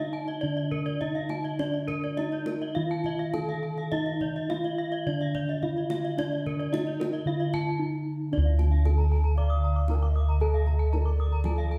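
Up front, a set of bossed gongs carries the bass with a round, beating, airy bronze tone, anchoring this brilliant, hypnotic slice of Balinese gamelan cut from a longer piece. Above them, a bronze metallophone struck with a wooden mallet plays the melody in a dark, smooth voice, while two more metallophones played with horn mallets weave arpeggios: one boxy and warm, the other bright and airy. All three metallophones ring with the shimmering beats of paired tuning, and a kendang adds tight, hard-handed drumming in the background. Shortly after the music moves into a new section at 8.3 s, a breathy bass bansuri enters at 9.3 s with a second line, bamboo-toned and expressive, with vibrato and tongued notes. The ensemble sounds heard from further back in a recital hall, with a reverb that lingers around the bronze.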